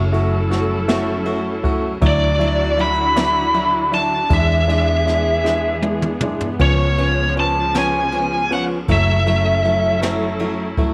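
A melancholic, aching six-eight pop ballad in F# minor at a slow 53 BPM, cut from a longer piece, where lush bowed strings with expressive vibrato and portamento hold sustained chords over a round, foam-muted electric bass, short-sustain grand piano accompaniment and a brushed drum kit with a boomy kick, high-tuned snare and dark cymbals that plays a fill at 5.4 seconds, while a dark, distorted, up-front picked lead guitar carries a bluesy melody from 2.1 to 10.0 seconds through F#m7, Dadd9, E7 and C#7 in a light studio reverb.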